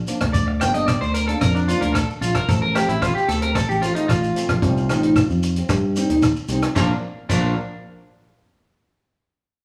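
A punchy, up-front fingered electric bass opens this joyful, sunny highlife guitar band piece at 112 BPM in Bb major. It is joined almost at once by a dark, fingerpicked flamenco guitar, a dry soul drum kit with a fat snare and rolled-off top, and a grainy, mellow shekere, with twangy, slightly broken-up electric guitar arpeggios entering at 0.3 s. A clean electric guitar solo leads over the Bb, F/A and Cm changes until 6.8 s, when the harmony returns to Bb, all set in a moderate large studio reverb with the live feel of a band playing together in one room.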